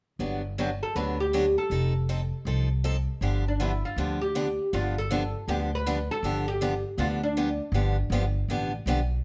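Charming and swinging, this short excerpt from a longer piece is acoustic string swing in the jazz manouche style, moving at 159 BPM in 4/4 with a 63% swing on the eighth notes. A bright, boxy parlour steel-string acoustic guitar, picked up front, carries the accompaniment, while a pizzicato upright bass on gut strings gives a thumpy, woody low end from 0.2 seconds. The oud enters at 0.6 seconds with the melody, its plectrum-plucked double strings sounding mellow and deep on a fretless neck. The harmony opens in G major on Gmaj7 and F7, then shifts to G mixolydian at 3.2 seconds as the chord turns to G7 and a new section begins. A light reverb surrounds the three up-front players.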